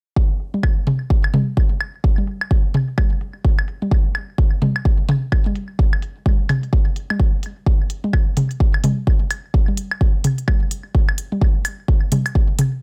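A dry cut from a longer hypnotic, quirky techno track at 128 BPM in 4/4, with a 60% swing on the sixteenths. A deep, up-front electronic kick drum, re-recorded in a large room, starts at 0.2 seconds and carries a filter sweep throughout. Clicky, low-pass-filtered electronic hi-hats sit lower in the mix, and tape-warm analog toms and woodblock with delay stand out front to give the groove its odd character.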